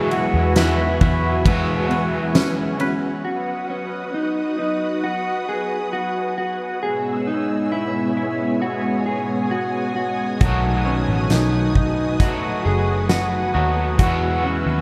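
Dream pop at 67 BPM in B mixolydian, dreamy and ethereal, where a vintage string-machine cello pad with ensemble chorus and a dark, clean, arpeggiated electric guitar with digital delay sustain throughout, while a twangy, slightly broken-up guitar with harmonic tremolo, a round foam-muted picked bass and a huge arena kit with fat snare, punchy kick and bright cymbals drop out between about 3.0 and 3.8 seconds and return at 10.4 seconds, a crisp, ringing kora flickering in the background, all in a dark production with light small-room reverb.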